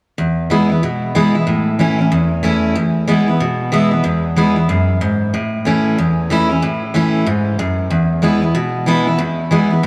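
Rock with a retro, rollicking mood, this short passage cut from a longer piece moves at a brisk pace with a swung eighth-note feel. A picked steel-string acoustic guitar plays alone from 0.2 to 9.9 seconds, covering a low-to-middle range and sitting up front in the mix. Its jumbo body gives a bright, full-bodied tone, and a tape echo trails its notes. The harmony shifts back and forth between E and A chords. A moderate echo chamber reverb adds a long, roomy tail that suits the vintage character.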